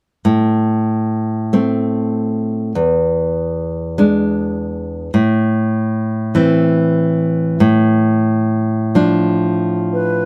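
A moderate studio reverb surrounds this live take of two players sharing one room, giving the short passage a sense of natural space. It is a romantic duo for flute and classical guitar in A minor, moving slowly at 49 BPM in dotted quarters in 6/8, with uneven beats and a rubato feel that makes the mood melancholic and yearning. The nylon-string guitar carries the accompaniment from 0.2 s, sitting up front with a bright, fingerpicked tone across a range from E2 to D4. Its chords move from Am to E7, back to Am, and then to Dm over an A bass. The silver concert flute arrives only at 9.9 s, touching a single airy B4 with vibrato and a crisp attack. Its sound feels somewhat distant and sits quieter than the guitar as this fragment of a longer piece breaks off.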